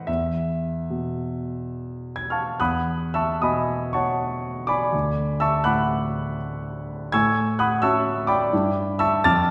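Impressionist classical solo piano in 3/4 with a free, rubato feel sets a dreamy, luminous mood across this brief fragment of a longer piece. A clear, natural concert grand sits up front, its deep bass reaching down to D2 and its upper register extending to A6 as the harmony drifts through E6/9, Dadd9, A6/9 and G6/9 chords. A wet, resonant hall reverb with a 1.5-second decay surrounds the instrument, lending the sound an airy, church-like spaciousness.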